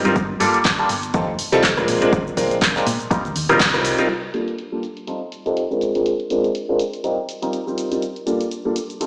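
A bright concert grand piano, up front with audible action noise and long sustain, drives this groovy, sensual filtered disco house cut in G minor at 122 BPM, its phased, sidechain-pumped chords cycling through Gm9, F7, Bb7 and Eb69 under a low-pass filter that sweeps from 4.1 seconds on. A round, hollow-body electric bass and a punchy electronic kick hold the low end until about 3.9 seconds, with a band accent at 3.6 seconds. Meanwhile, a punchy analog drum machine's handclaps, hi-hat, rim click, shaker and crash carry on filtered and pumping, all set in plate reverb with a small-speaker sound played back in a bare room.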